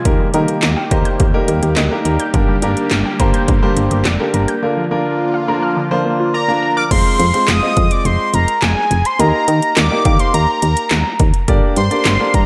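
At a straight 105 BPM in 4/4, 80s electronic drums drive this nocturnal, melancholic synth-pop excerpt in F dorian with a punchy kick, gated snare, metallic hi-hats, handclaps and crash cymbal, while a round, mellow FM bass plays beneath an open concert grand piano with long sustain that sits up front over chords moving through Eb, Gm, Bb and Fm. Until 6.9 s, a swirling, detuned sawtooth pad with phaser and chorus and a warbling, lo-fi pluck playing arpeggios through chorus and delay hover in the background. At 6.3 s, a fat, detuned analog lead with a sub octave and vibrato takes the melody up front, treated with phaser, slapback echo and delay, all set in a lush hall reverb that gives a big arena sound.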